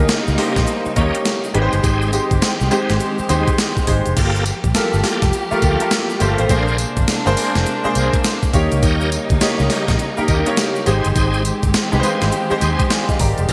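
New jack swing R&B at 103 BPM with a swung sixteenth feel, this punchy, slick excerpt moves through Eb7, Abmaj7, Gm9 and Bb9 chords. A gated 80s drum machine with a thumpy kick and gated-reverb snare sits up front beside a round, foam-muted fingered electric bass. A polished baby grand piano with analog chorus carries the accompaniment and adds a fill from 11.7 s, while a shouting tonewheel organ with overdrive, fast rotary speaker and delay stabs in from 0.4 s, over background bowed strings with portamento and a grainy, distant tube shaker.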